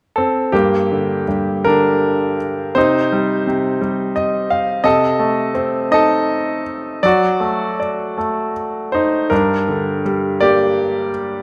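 Wistful and dark, this brief excerpt from a longer classical piece features a lone grand piano in a lyrical, rubato 6/8, its tone bright and brilliant yet intimate, placed up front with audible action noise. The harmony moves from G minor through C minor and a diminished chord to D before settling back on G minor, with a short piano fill at 3.8 seconds. A moderate scoring-stage reverb gives the instrument a sense of space.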